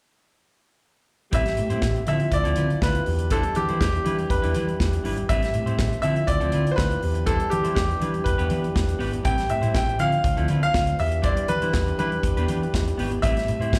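At 1.3 s a driving disco groove at 121 BPM starts, in straight 4/4 and D dorian, tuned to A4 = 437 Hz. It is heard as a live gig through a venue's PA, with club reverb around the band. An up-front grand piano carries the melody between G4 and G5 in a brilliant, short-sustained tone, colored by slapback and tape echo. Beneath it, a dark, round hollow-body bass holds down the low end, and a punchy, acoustic studio drum kit of kick, medium-tuned snare and hi-hat keeps the danceable pulse. A clean, picked semi-hollow guitar adds accompaniment with spring reverb and slapback echo, while a mellow French horn section holds smooth, lightly vibrato chords in a classical ensemble style. The harmony cycles through Am9, Dm9, Cmaj9/E and Em7 until the cut at 13.8 s.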